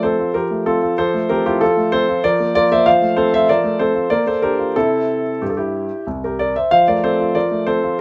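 Moving in a gently flexing triple metre, with rubato easing and stretching the beat, this short passage from a classical-period piano sonatina has a cheerful, playful character. A solo grand piano carries everything from start to finish, its tone warm and present with a long sustain that lets each chord ring. Sitting up front in the mix, the instrument spans a generous register from deep bass notes up into the treble around F5. The harmony stays simple and sunny, shifting at around 2.2 seconds and again near 4.1 seconds before settling back home at 6.7 seconds. A light reverb adds a touch of air around the piano, and the passage ends as a fragment cut from a longer piece.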